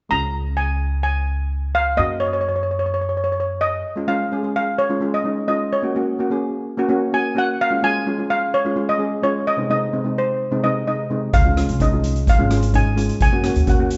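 A bright lead steel pan, struck with hard rubber sticks and miked close and dry, carries the melody up front through this carefree, festive calypso excerpt at 128 BPM in a straight 4/4, in Db major. Beneath it, cello pans supply a shimmering accompaniment in the lower register, and the harmony moves between Db and Gb, colored by add9 chords and an Ab/C. A woody, thumpy upright bass with gut strings plays pizzicato at the start, drops out at 3.8 s, and returns at 11.3 s. At that same moment a street-band drum kit joins with hi-hat, rim click and a boomy kick, sounding polished and airy. The whole performance sits in a moderate recital-hall reverberation, as if captured in a church or concert hall, with the highest frequencies softly rolled off.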